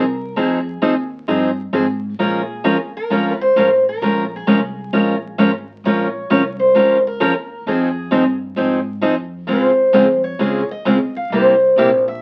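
Fiery and virtuosic, this brief excerpt of acoustic string swing in the jazz manouche style rides a lilting swung groove in four, with a picked steel-string acoustic guitar carrying a bright, fresh-stringed melody over a second picked guitar's up-front accompaniment, where finger squeaks can be heard. An upright bass sits in the background, played pizzicato with a woody, growly, thumpy tone, as the harmony moves through minor seventh chords before turning to a major seventh near 9.5 seconds and a dominant seventh near 11.3 seconds. Everything is bathed in a modest small-room reverb and the crackle of a very old 78 rpm record.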